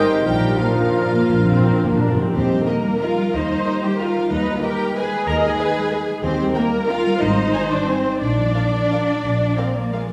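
A rubato 3/4 pulse at 164-200 BPM carries this elegant, festive classical passage in Eb major, where a smooth, close violin section sings the melody over a darker, woody second violin section, lush distant violas, an up-front cello section and a soft-attacked double bass section with portamento, while a ringing fingerpicked harp spins arpeggios throughout; in the opening seconds a clear oboe, a very quiet mellow clarinet, an airy silver flute, a punchy bassoon, hushed French horn and trombone sections holding chords, and a roomy trumpet playing stabs all sound together, and close, dry timpani add a fill from 0.3 to 2.3 seconds and return at 4.3 seconds, the ensemble set in a wet recital-hall reverb.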